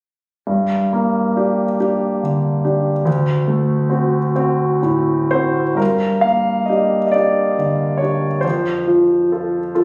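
A concert grand piano opens at 0.5 seconds, alone and intimate, setting a yearning, mournful romantic nocturne in a lilting compound metre with a freely flexing, rubato pulse. The instrument sits up front with a present, polished tone, deep bass and long sustain, and the noise of its action is audible beneath the notes. Its range runs from the low register up into the middle treble, and the harmony moves from a minor home chord to a dominant seventh before a new phrase begins at 5.8 seconds and settles onto a major chord near the close. A wet recital hall reverb surrounds the playing, giving each phrase a lingering glow. Cut from a longer piece, this brief passage ends at 9.8 seconds.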